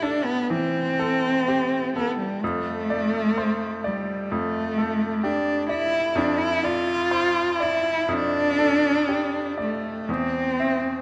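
Melancholic and yearning, this short romantic classical passage for cello and piano unfolds with a flexible, rubato feel, drifting from Am to F69 and settling on E5 at 10.1 seconds. The single bowed cello carries the melody up front, its warm tone shaped by vibrato, soft attacks and expressive portamento, while a bright, brilliant baby grand accompanies with an intimate, polished presence, short sustain and audible action noise. A wet concert hall reverb, with a decay of about 1.9 seconds, surrounds the duo in this fragment cut from a longer piece.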